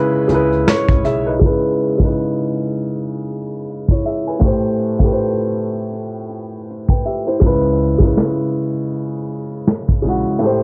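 Reflective and hazy, this lo-fi hip hop excerpt moves at an unhurried 80 BPM in 4/4, with a gentle swing on the sixteenths that keeps it loose. An upright piano carries the accompaniment from the start, its tone woody, smooth and vintage, sitting up front with a cassette tape color over it as the harmony moves from C#m7 to Am7 and back to C#m7 at 7.4 seconds. A brush drum kit enters at 0.3 seconds with hi-hat, a medium-tuned snare and a punchy kick, sounding dark and rolled-off in a small room, also tinted by cassette tape. The pizzicato upright bass, woody with steel strings, plays briefly near the opening and returns at 7.4 seconds. A filter sweep runs from 1.4 seconds to the end, and the whole recording carries a home-recorded cassette character with a low-pass filter and light reverb that soften its edges.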